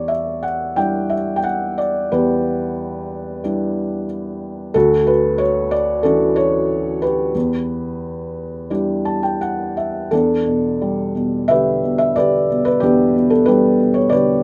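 Brooding and cool, this lyrical classical solo in E dorian, cut from a longer piece, moves at a rubato 90 BPM in 4/4 on a felt-muted upright piano whose dark, intimate tone sits up front with thick felt and audible action noise in light reverb, drifting from Em7 to Dmaj9 and back before a short fill at 8.7 seconds leads into a new section at 10.1 seconds.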